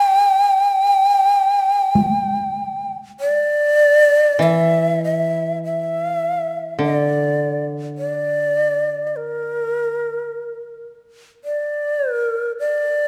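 Japanese traditional chamber music in a still, austere mood, this fragment of a longer piece drifts in free rubato around 47-54 BPM in G kumoi, with an up-front, closely heard bamboo shakuhachi carrying a breathy, expressive melody with vibrato and tongued notes throughout, a brief heavy-stick strike from a taiko ensemble at 2.0 seconds, and a dry, woody koto plucked with fingerpicks adding low accompaniment from 4.4 to 10.2 seconds, all set in a moderate concert hall reverb.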